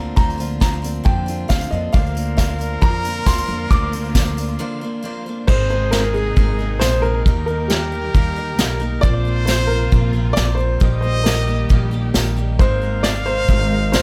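In a roomy studio sound, this uplifting, hopeful indie folk excerpt builds around a mellow, woody upright piano melody with slapback echo, set over fingerpicked and bright, full-bodied picked steel-string guitars, thumpy pizzicato upright bass, up-front brushed drums with dark cymbals, and a jingly tambourine; at 1.9 s a lightly vibrato, classical-style trumpet second line, a worn, very quiet grand piano and soft-attack bowed chamber strings join, and the fingerpicked guitar drops out at 3.7 s.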